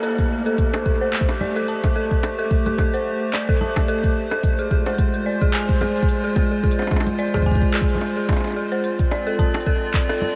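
Glitchy and intricate, this short IDM excerpt pairs a warbling, nostalgic pad of detuned, lo-fi sustained chords moving from Am7 through Fm to Dm7 with an eerie, inharmonic FM bell tracing decaying arpeggios through chorus and delay. Underneath, an organic electronic kit of bongos, congas, handclaps and crisp hi-hats rides a lightly swung groove with tape echo, while a soft, up-front electronic kick enters at 0.2 seconds. The whole dreamy mix is soaked in a huge ambient reverb.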